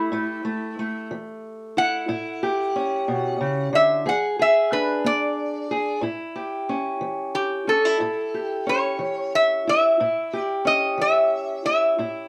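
A metal-body resonator slide guitar carries the melody in this gritty, swaggering cut from a longer acoustic country blues piece, its metallic, nasal voice sitting up front as it is played with fingerpicks and a steel bar. Beneath it, a fingerpicked steel-string parlour guitar supplies a dark, boxy accompaniment, also placed close in the mix but sitting lower in level than the slide. The feel is a slow, straight 12/8, with the harmony moving from A7 to E7 at 4.1 seconds and back to A7 at 6.0 seconds. The resonator takes a slide solo through the first six seconds before the second section begins, and both guitars play throughout the 12.3 seconds. A moderate studio reverb lends the pair a modest sense of room.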